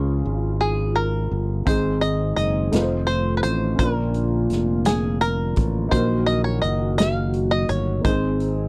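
A twangy, fingerpicked banjo carries the melody up front in this jubilant, soulful slow gospel excerpt in 6/8 at 56 BPM in Db major, over a worn, slightly detuned upright piano, a growly, punchy fingered electric bass and a very quiet, clear French horn section holding chords, with a soft, flute-like tonewheel organ with key click and slow rotary speaker and a swinging big-band drum kit of hi-hat, punchy kick and snare joining at 1.7 seconds, all in a dry, close 1970s-style studio sound as the chords move from Db through F7 and Ebm to Ab.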